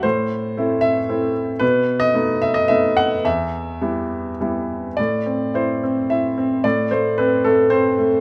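A solo baby grand piano carries this short classical fragment, its tone warm and natural with a short sustain, placed up front by close, detailed microphones. The mood is cool and moody, moving in a lyrical 3/4 with a rubato feel that drifts between 99 and 117 BPM. Tuned to A4 = 443 Hz, the piano spans E2 to F#5 and opens in E harmonic minor, moving through Am, B7 and Em. At 5.0 s a new section settles into A minor, moving from Am to a more open Amadd9 before the piano stops at 8.2 s. Light reverb gives the intimate sound a touch of space, and the passage is cut from a longer piece.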